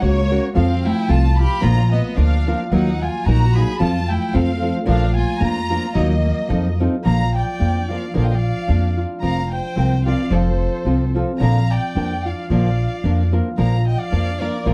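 Festive and proud, this mariachi-style Mexican folk excerpt moves at 111 BPM in a swung 2/4, settling into Bb major at 7.0 seconds. A lush, distant violin section carries the melody with rich vibrato while a single close, clear violin bows a second line beneath it, over fingerpicked nylon-string guitar, a mellow ringing concert harp playing thumb-plucked arpeggios, and a woody, thumpy pizzicato upright bass sitting up front. Light reverb wraps the whole in a dark production, with the chords moving through Ebm and F7 before the second section.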